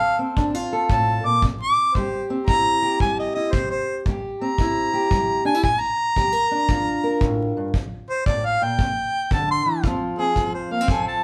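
A mellow harmonica and a dark, boxy fingerpicked parlour guitar open this gritty, rollicking acoustic country blues fragment together, with a tight, brushed kick drum joining at 0.4 seconds under a swung eighth-note feel. The harmonica takes a jazz-styled solo up front throughout, its soft-attacked, scooped notes carrying light vibrato and a smooth top, while the guitar sits close beside it moving through F, C and Bb. The players sound live in one room with moderate studio reverb and a layer of vinyl crackle.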